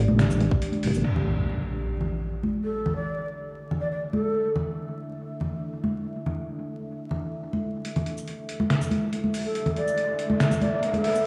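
A half-time 4/4 pulse at 141 BPM drives this brooding, heavy deep dubstep passage, where a dark, slow-attack ambient pad and a detuned sawtooth wobble bass open together, the bass lasting only briefly. Dub-echoed acoustic congas and a gritty, pitched-down sampler-style kit of snare, hi-hat, shaker and crash join them, followed by a tight electronic kick. The pad moves from D5 to Dsus2 under a filter sweep, a breathy, bright ney melody is first heard at 2.6 seconds, an electronic impact and riser appear, and the kit returns at 7.8 seconds for the build-up, all inside a dreamy mix soaked in plate reverb with vinyl crackle.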